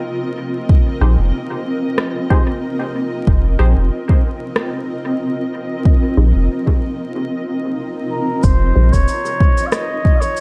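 A bucket-muted trumpet, veiled and distant, drifts in with dub echo at 8.1 seconds over a cloudy granular pad, a deep tape-warm kick, a round sub bass, dark phased chord stabs and an echoing rim click and cabasa in this spacious, meditative ambient dub fragment in F minor at 93 BPM, cut from a longer piece with vinyl crackle under a dark production.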